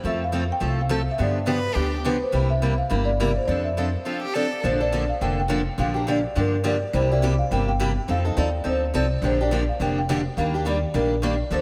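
A boxy picked archtop guitar with lush chorus and a thumpy, woody upright bass open this charming, playful jazz manouche swing excerpt, joined at once by a mellow, round marimba melody with analog delay and briefly by a clear, smooth bowed violin with vibrato at 1.5 and 4.1 seconds, all within a dreamy, reverb-soaked mix.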